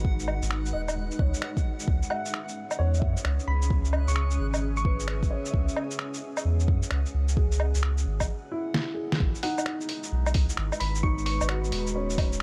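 A swung 4/4 groove at 131 BPM anchors this wistful, melancholic future garage excerpt in G# minor, driven by a deep, layered electronic kick and a muffled, pitched-down lo-fi sampler kit of finger snaps, hi-hat, shaker, woodblock and a fat, overdriven snare, both sitting up front with a small-room character. Beneath them a round, soft dub sub bass with tube saturation pumps against the sidechain, while a dark, woody upright piano with audible action noise and tape echo plays accompaniment over G#m7 and C#madd9 chords. A blurred, detuned granular cloud pad holds sustained chords through its own reverb, and a reversed, bright swelling texture drifts in the background until 8.3 seconds. A tine-like, FM-based synth pluck with chorus and tape echo carries the melody in two short phrases, from 2.1 to 5.2 seconds and again from 9.4 seconds. A brief break with a drum fill and a band accent leads into the closing section, all set over a layer of vinyl crackle in a dry, close sound.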